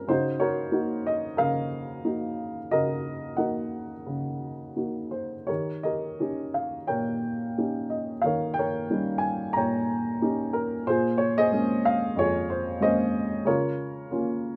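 Relaxed and sunny, this brief lyrical classical excerpt features a solo upright piano, dark, mellow and woody with a slightly detuned character, placed up front and heard in close detail with light reverb, moving in a rubato 4/4 between 82 and 95 BPM over chords from Gb6/Db through Eb7 and Bbm9 to Db6, spanning F2 to Bb5 across its 14.6 seconds.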